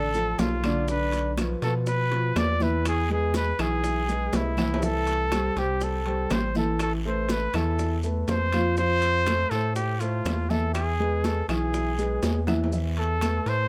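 Cuban son with a guajira lilt at 122 BPM, this warm, danceable excerpt puts a vibrato-laden trumpet melody and a rubbery, hollow square-wave bass up front over dark, mellow baby grand piano arpeggios, while high-tuned, hard-hand congas, round low bongos, ringing metal-shell timbales, woody claves, a raspy guiro and grainy vintage maracas sit in the background, with drum fills at 4.6 seconds and from 12.2 seconds as the chords move from Dm through E, C and Amadd9 to a closing Esus4, all captured close and dry.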